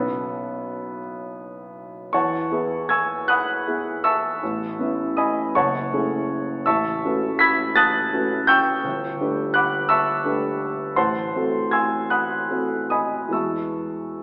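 A clear, polished grand piano plays alone in this serene, hazy excerpt of impressionist classical music, moving in a rubato 6/8 through chords from B9sus4 to E6 at 2.1 seconds, then on through F#m9, G69 and Am6 before reaching Eadd9, its long sustain ringing into a wet recital-hall reverb that sounds as if heard from further back in the room through an AM radio.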